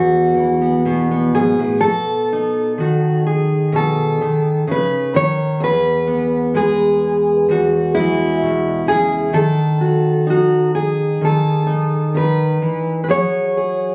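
Loosely rubato in 4/4 at about 64 BPM, this peaceful folk passage, cut from a longer piece, features a solo fingerpicked steel-string dreadnought tuned to A4 = 436 Hz, its full-bodied, fresh-stringed tone sitting up front across a range from E2 to C#5. After a brief Esus2 opening, the harmony moves at 1.8 s through B7, E and B7/D# before settling on F#sus2 at 13.1 s. Captured on a phone in the room, the sound carries a moderate club-like reverb and compression, lending the playing a warm, intimate closeness.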